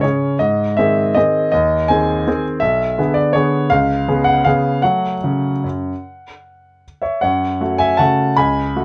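A clear, intimate baby grand piano plays solo and up front, its natural tone carrying audible action noise, in a bittersweet, elegant classical waltz in triple time with a flexible rubato feel. The harmony passes through a diminished chord and a dominant seventh before settling on a minor chord at 4.8 seconds, and a new section begins at 7.2 seconds in this short passage cut from a longer piece. Light reverb surrounds the playing, and the recording carries the worn, warbling pitch drift of old cassette tape.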